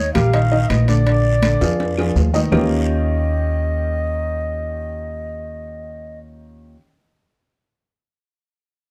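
A dark, lightly reverberant production frames this short cut from a longer Afro-Cuban jazz piece, sophisticated and danceable in a straight four. An up-front upright bass, woody and plucked on steel strings, anchors the low end, while a warm, smooth grand piano with a vintage tone supplies the harmony, moving from Ebadd9 to Bb7 and then to Eb9. A concert flute carries the melody with a pure, straight tone and crisp attack. The percussion plays between 0.2 and 2.6 s: bright, high-tuned congas struck with soft hands sit in the background beside ringing metal-shelled timbales, a raspy guiro and band-limited, old-fashioned claves, with a drum fill arriving at 1.6 s. Once the percussion drops out, flute, piano and bass carry on through the second section.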